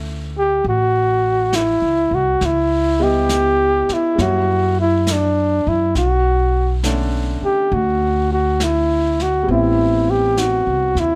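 A dry, close-sounding excerpt of a tender, romantic jazz ballad in D major, moving at a slow 68 BPM in 4/4 with a swung eighth-note feel, with chords drifting from Dmaj9 through F#7b9 and Bm9 to Am7. Up front, a breathy flugelhorn carries the melody in a narrow, whispered range, its mellow tone softened by gentle vibrato and a soft attack. Beneath it, a smooth, vintage grand piano and a woody, thumpy pizzicato upright bass play from the start, while a brushed jazz kit with snare and hi-hat enters at 0.6 seconds and stays distant and roomy with a warm, rolled-off top.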